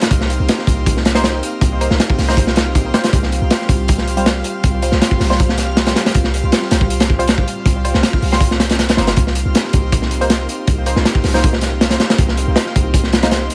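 Drum and bass with a jungle flavor at 159 BPM in C minor, this nostalgic, dark excerpt runs on a crunchy, saturated breakbeat kit with a tight kick and rolled-off top sitting up front, over a deep, boomy 808-style bass and an airy, breathy pad holding Cm7 and Fsus2/C chords with chorus in the background. From 1.2 seconds a muted, detuned dub chord stab with filter sweep, phaser and dub echo joins, while a reversed, granular, dreamy texture hovers very quietly and a faint electronic swell sounds at 8.6 seconds. The dry mix carries a prominent layer of vinyl crackle.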